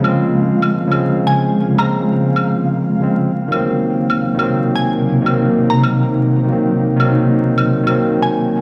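A swung 4/4 pulse at 138 BPM, with 66% swing on the 16ths, drives this ghostly, melancholic future garage fragment, carried by compressed, pitched-down claves that sound muffled under low-pass filtering and drop out at 8.0 s. Up front, a bright, barky tine electric piano heard through a combo amp plays clean accompaniment between Db3 and C4, its notes trailing dub echo. Beneath it, a cloudy, blurred granular pad of detuned triangle unison holds evolving sustained chords from C3 to C5 under a filter sweep, moving from Bbm7 to Cm7b5 at 3.3 s. A glassy, crystalline wavetable pluck with a nasal edge and a noise layer carries the melody between Ab5 and Bb5, appearing briefly at 1.3 s and returning at 4.8 s, thickened by chorus and dub echo. Far in the background, a flickering, grainy texture hovers on F5, while a lush hall reverb, the feel of a big sound system in a bare room and a layer of vinyl crackle wrap this excerpt in haze.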